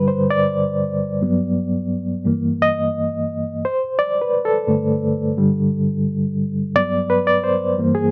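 A lone reed electric piano opens this short soul fragment, its barky, reedy tone lightly overdriven and shimmering with fast tremolo as it sits up front through its built-in speakers. At 87 BPM in a straight 4/4 feel, the solo moves through a smooth, warm G major progression of colored chords, from Gadd11 and Gmaj7 through a darker Gm6 before settling back to Gmaj7 near 6.8 seconds. The dry, close sound with a touch of reverb recalls a 1970s studio, and the passage ends at 8.1 seconds, cut from a longer piece.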